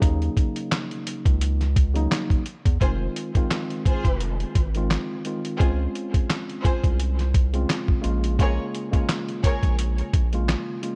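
A dark, dry production with very little room sound frames this short, gritty boom-bap hip-hop excerpt at 86 BPM in 4/4, its sixteenths carrying a slight swing. A compressed, sampler-style soul drum kit sits up front with a thumpy kick, fat snare, hi-hat and handclaps, its grit tinged by tape. Beneath it, a round analog bass with a deep, fast-attacking, sustained tone holds the low end until 10.6 seconds. A worn, slightly out-of-tune tine electric piano accompanies quietly through a cassette-tape filter over chords moving from Ebm7 to Fm7 at 2.8 seconds, then Dbmaj7 and Bbm7. From 2.8 to 9.7 seconds, a distant, woody string section adds bowed stabs played sul tasto with vibrato, softened by filtering and an analog delay that lends a lush, shadowy edge.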